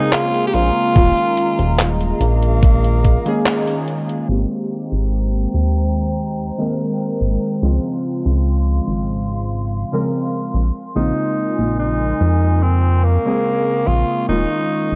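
Nostalgic and woozy, this vaporwave fragment drifts on a worn, warbling cassette sheen, with lo-fi synth keys playing over a detuned, tape-like pad that holds sustained chords above a glossy, chorused synth bass. A raspy, gritty tenor saxophone sings a scooped, lightly vibrato melody up front, drops out at 3.8 seconds and returns at 11.0 seconds. A thumpy electronic kick and a detuned 8-bit drum machine with handclaps and hi-hat drive the opening until a short break and band accent, after which the drums fall away and a filter sweep runs from 4.3 seconds on.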